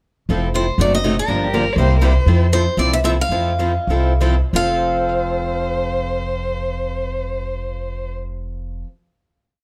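Charming and swinging, this short acoustic string swing piece in F major moves at 170-242 BPM and slows from 2.3 to 4.5 seconds before settling on a final F chord, with a bright, boxy picked steel-string guitar carrying a motif-based melody through tape echo, a second parlour guitar picking short four-to-the-bar rhythm accented on two and four, a swing-style guitar adding background rhythm, a woody, thumpy upright bass playing two-beat root and fifth, and a bowed violin with vibrato and portamento answering in the melody's rests, all in a moderate studio reverb.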